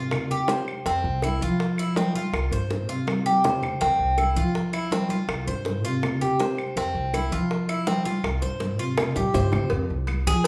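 A bright, metallic Cuban tres sits up front with picked arpeggios on double strings, some doubled at the octave, over a dark, growly pizzicato upright bass, as the two alternate between Csus4 and F5 in this warm, danceable Cuban son and guajira groove at 163 BPM in 4/4. Tight, high-tuned bongos and cowbell drive the rhythm, with drum fills at 3.1 and 8.6 seconds, while hard-hand congas with a thin skin and a vintage, band-limited tone sit in the background alongside woody, saturated claves. The band plays live in one room with a lush large-studio reverb, and the passage is cut from a longer piece.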